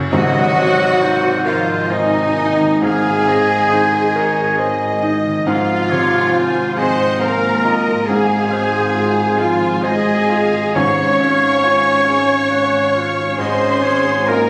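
In a rubato triple metre, this hopeful, uplifting cinematic film cue sets a lush violin melody and a distant, intense second violin line against pure flute, smooth-topped oboe and clarinet lines, very quiet violas, clear piano accompaniment, ringing harp arpeggios, loose sustained chords from a warm French horn section and a rich, even cello and double bass foundation, while a dark, dry tam-tam sounds until 3.7 s and hard-mallet timpani strike at the opening and again at 10.8 s, all within a reverberant scoring-stage sound captured on a phone and compressed.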